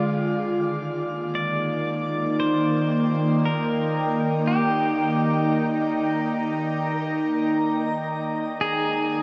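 A slow, straight 4/4 pulse at 58 BPM carries this spacious, melancholic ambient fragment, cut from a longer piece and resting on an Eb chord from 0.3 s until the harmony drops away at 8.6 s. Up front, an evolving wavetable pad holds detuned, morphing chords with chorus and a filter sweep, while a bright, twangy pedal steel guitar sings the melody through volume swells and tape echo. A glassy, beating glass harmonica shimmers faintly in the background and fades out, all set in a deep shimmer reverb.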